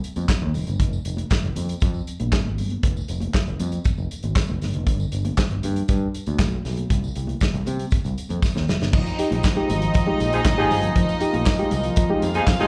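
A dry soul drum kit with a tight kick, dark cymbals and handclaps opens this driving, glamorous disco excerpt, with a faint, jingly tambourine. Almost at once a round, overdriven picked bass comes in up front, along with very quiet, high-tuned congas, and the band sounds like a live gig heard through a venue's PA with club reverb. After a drum fill, at 8.9 seconds a reedy, lightly overdriven electric piano, a distant gut-string section with light vibrato and slapback echo, and mellow French horns holding sustained chords in the background enter, joined at 10.3 seconds by tight pop-style horn stabs up front.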